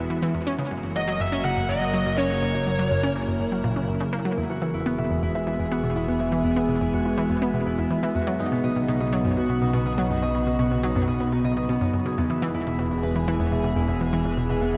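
An evolving wavetable pad sits up front with morphing, sub-octave sustained chords bathed in chorus, anchoring this luminous, expansive stretch of sequencer-driven ambient space music at 123 BPM in E lydian, moving through F#, E, Badd9 and back to E. A bright, detuned analog pluck riff with tape echo runs alongside it, while a fat, saturated analog bass fades in across the whole passage, and a dark, distorted electric lead guitar line briefly appears between 1.0 and 3.1 seconds. From 4.4 seconds a ringing, fingerpicked Celtic harp adds arpeggios with tape echo, all set in a lush hall reverb in this section cut from a longer piece.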